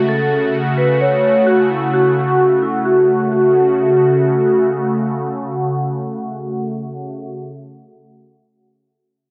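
A vibraphone struck with medium hard mallets carries the melody between E4 and C#5, its metallic, ringing tone touched by a slow motor vibrato and softened through a low-pass filter and tape echo before it drops out at 4.7 seconds. Beneath it, a warm analog pad holds sustained chords from C#3 to F#4, its detuned sawtooth voice smooth and up front, with a soft attack, chorus and a low-pass filter. This short excerpt of a longer hip hop track leans toward trap, moving at 130 BPM in 4/4 with a half-time feel. Set in F# minor on an F#m chord, it carries a melancholic yet menacing mood. A filter sweep runs through the opening 3.3 seconds before the music shifts into a new section, and the pad lingers on alone until 7.3 seconds. Light reverb gives the whole a small room ambience.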